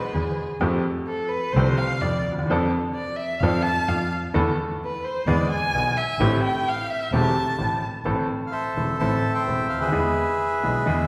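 A rich, bowed violin with vibrato and portamento carries an expressive solo over the opening 8.1 seconds of this dramatic, melancholic tango excerpt in A minor at 129 BPM, its rubato feel set against a bright, worn, slightly detuned upright piano and a warm, bowed double bass with a soft attack. At 8.5 seconds a reedy, dark, smooth bandoneon takes the melody up front, running through to the close at 11.1 seconds. The whole sits in a reverberant church or concert hall space with a long, wet tail.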